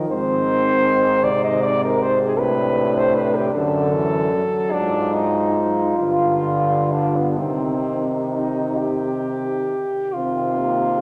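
A clear, vintage-toned French horn sings the melody up front, spanning B3 to Eb5 in this serene, lyrical classical excerpt for horn quartet in C minor, moving in a rubato 6/8 at roughly 42-53 BPM by the dotted quarter. Two mellow, smooth-topped horns fill in the second line and the inner accompaniment, one set back and one with light vibrato, while a warm bass horn with vibrato sits forward beneath them. The harmony drifts from Ab through D7/A toward a settling C minor at 7.4 seconds, all bathed in the long, wet reverb of a concert hall.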